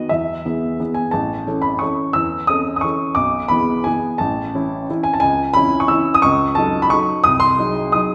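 A lone upright piano, woody and intimate with its action noise audible up close, opens a wistful, nostalgic classical waltz in 3/4 at 176 BPM, its beats uneven and pushed and pulled by rubato. The harmony moves from E to A and E7/B, then turns toward C#m, D#m7b5/C# and G#7/B# by 7.3 seconds, the piano ranging from A1 to E6. A wet recital-hall reverb of about 1.4 seconds surrounds the up-front instrument with a soft-topped church or concert-hall sound, in a brief 8.1-second passage cut from a longer piece.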